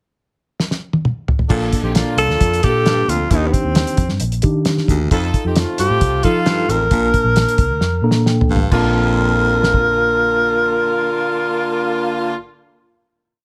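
Uptempo 1960s-style soul at 133 BPM in Bb major, this short, danceable piece opens with a cloth-damped, thuddy drum kit (fat snare, tight kick, dark cymbals) filling through a pickup bar before the band enters at 1.5 seconds. A round, foam-muted fingered electric bass plays a syncopated line beneath close-voiced tine electric piano chords with grace notes, as a tight horn section adds short riffs and a raspy baritone saxophone growls low punctuation. At 2.2 seconds an intimate, breathy tenor saxophone joins up front, carrying a motif-based melody of scooped call phrases, with plate reverb on the horns, piano and tenor. A drum fill and a piano fill at 7.8 seconds lead into a held final chord from 8.7 seconds.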